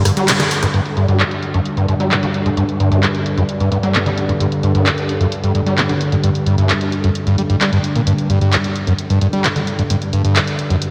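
Soaked in a lush hall reverb, this dark, intense slice of driving peak-time techno moves at 131 BPM in a straight 4/4, cut from a longer piece and tuned slightly below standard pitch. A screaming, squelchy acid riff sits up front, its resonant sawtooth tone distorted, bright and aggressive, colored by analog chorus, cassette tape grit and tape echo, while a deep, moody pad drones beneath on detuned unison sawtooths with a sine sub octave, slow to bloom and long to fade. A punchy analog drum machine, dry and close, enters at 0.1 seconds with handclaps, rim clicks, and a hi-hat and ride cymbal softened by low-pass filtering, all in a small room, and the full band hits an accent at 0.3 seconds over a G5 chord.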